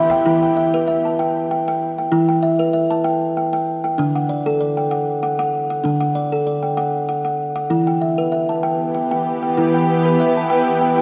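In a lilting triple-time sway with lightly swung sixteenths, this gentle, hypnotic world-meditative passage, cut from a longer piece, centres on a woody, ringing, close-miked kalimba playing arpeggios throughout over an Em–D–Em progression, while a shimmering, detuned, warbling ambient pad with chorus and its own reverb holds sustained chords for just a moment at the start and returns at 8.6 seconds, all set in the long, wet reverberation of a church.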